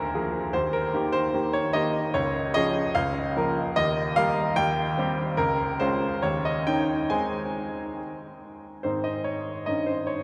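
A clear, up-front grand piano plays solo in this graceful, playful classical-period sonatina in Ab major, moving at a flexible rubato around 68-75 BPM in 2/4 and spanning Db2 to Ab5 through elegant chord changes that arrive on Ab at 7.1 seconds, all set in a wet cathedral reverb with a long 5.1-second decay.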